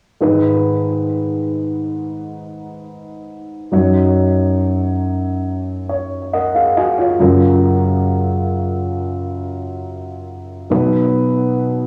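A warm concert grand piano plays alone, deep in the bass and up front, through cassette tape and tape echo in this tender, heartfelt pop excerpt at 69 BPM, moving through G#m, D#m7/F#, F#maj7 and B with a fill from 5.5 to 7.2 seconds, all set in a wet studio reverb and the small room ambience of a home cassette recording.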